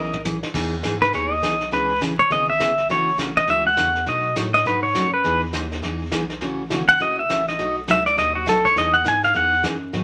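Country western swing with a playful, swinging lilt, where a brief brushed drum fill gives way at 0.5 seconds to a bright, clean pedal steel guitar solo played up front with fingerpicks, slide and volume swells over a full-bodied picked dreadnought acoustic guitar, a deep saturated sub bass and a vintage brush kit with dark cymbals, all set in a moderate studio reverb under a layer of vinyl crackle through jazzy changes moving from Emaj7 to C#m7, F#m7 and B7.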